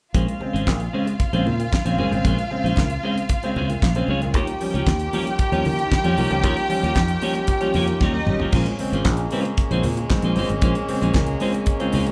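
Sultry and danceable, this disco groove moves in a straight 4/4 feel, cut from a longer piece with the band playing live together in one large studio room. Up front, a dry, damped 70s drum kit with a fat snare and tight kick drives the beat with hi-hat, handclaps, toms and crash cymbal, and a short drum fill arrives at 8.0 seconds. A growly, punchy fingered electric bass sits alongside it, and very quiet congas with a thin, bright skin add a light percussive layer. A dark, clean picked electric guitar and a natural concert grand piano, placed in the background, fill out the accompaniment over chords moving from Bbm9 to Eb9 and back. A lush, distant bowed string section carries a second line until 8.5 seconds, while a nasal, metallic section of stopped French horns enters at 4.3 seconds with smooth sustained chords that carry through to the end.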